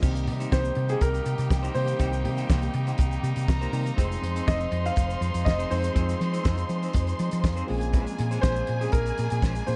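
A driving, sultry disco groove opens at once with a tight, fat-snared soul drum kit and a dark, round hollow-body bass pushed up front, the kit's kick, hi-hat, snare and crash cymbal sitting in a pumping little booth. Behind them, a clean, twangy picked electric guitar and a worn, slightly out-of-tune electric piano with light overdrive fill in the accompaniment, while a grainy egg shaker ticks quietly in the background. A lush bowed string section carries a second line with vibrato and portamento, and a distant, nasal section of stopped French horns holds metallic sustained chords beneath. At 0.5 seconds a polished, present grand piano takes the melody in a fairly high register. The harmony moves from Cm7 to Fm7 and then to Bbm9 near the end, and the whole excerpt, cut from a longer piece, has a dark, warm production with a small-room ambience.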